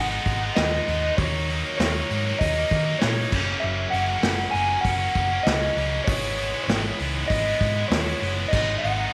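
A straight 4/4 pulse drives this cool, restless indie rock excerpt, with an unplugged drum kit played with bundle sticks sounding distant and roomy, its dark cymbals, medium-tuned snare and tight kick entering at 0.3 seconds. A bright, double-tracked high-gain guitar riff sits up front over a round, hollow-body picked bass, while a dark, slightly broken-up lead guitar through a small old amp carries the melody with a lo-fi slapback echo. The chords move from G#m7 through D#m7 and F# to Emaj7/G#, all set in a light small-room reverb.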